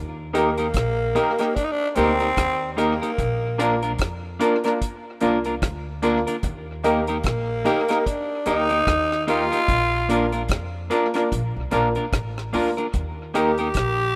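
A relaxed 74 BPM groove in 4/4 with a gentle 16th-note swing sets this sunny, laid-back roots reggae cut in Bb major, as a woody, dark upright bass opens alone at 0.0 s before a deep kit of hi-hat, tight kick and rim click, tinged with tape echo, joins at 0.3 s. A clean, scooped semi-hollow electric guitar with tape echo and a clear, present grand piano playing stabs fill out the Eb and Bb changes. Up front from 0.4 s, a raspy, growling tenor saxophone with light vibrato and tape echo carries the melody, all set in a small, lightly reverberant room with the rough feel of a home demo.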